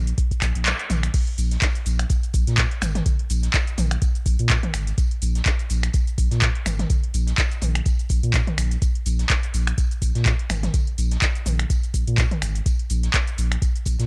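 Hypnotic and gritty, this 125 BPM acid house excerpt with a 56% swing on the sixteenths pairs a thick, saturated sub bass that pumps against the sidechain with an overdriven, up-front analog kick and a drum machine of metallic hats, claps, snaps, shaker, toms and crash on cassette tape, while a very quiet, dark breakbeat kit with a high-tuned snare and tambourine sits beneath in a small-room home-cassette sound, the kick dropping out from 0.7 to 1.1 seconds around a band accent before the drop hits at 1.1 seconds.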